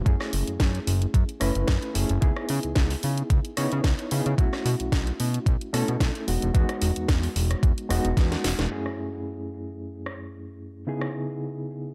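A dry nu-disco excerpt with a sensual, cosmic mood: a thumpy, overdriven electronic kick sits up front beside a fat, detuned analog bass with a plucky filter and sidechain pumping, while a reedy, gritty electric piano with fast tremolo, delay and pumping carries the jazzy seventh chords and a layered house kit with a cracking snare and muffled hats adds a drum fill at 8.2 seconds before the kick and bass stop and a filter sweep on the drums runs from 8.7 seconds to the end.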